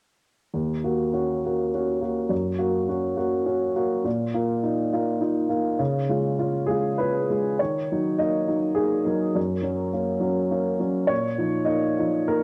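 Light reverb and the ambience of a small room frame this home cassette recording, a short fragment lifted from a longer piece of neoclassical minimalist piano. A solo upright piano sits up front, its woody, polished tone carrying a long sustain and the character of cassette tape. In a gently rubato 3/4, the mood is melancholic and reflective. The harmony moves through Ebm7, Gb, Bbsus4 and Db, then returns to Ebm7 at 7.6 seconds for a second passage that revisits Ebm7, Gb and Bbsus4. The piano spans a broad register from its low bass to the upper middle of the keyboard, playing from 0.5 to 12.4 seconds.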